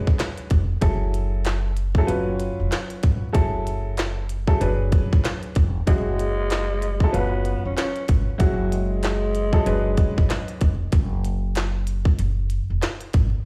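Vinyl crackle and the stony echo of a bare room around a big sound system frame this gritty, dark boom-bap hip-hop excerpt in F# minor, which moves at 95 BPM with a swung 16th feel. Up front, an overdriven electronic kit with a tight kick, tiny snare, clicky hats and handclaps plays alongside a woody, pizzicato upright bass, while a mellow, vintage upright piano, softened by cassette tape and plate reverb, carries shifting chords until 10.7 seconds. At 5.9 seconds a growling tenor saxophone with tape echo takes a jazz-style solo line, breathy and raspy with subtone, vibrato and scooped notes, before bass and drums carry on alone to 13.3 seconds.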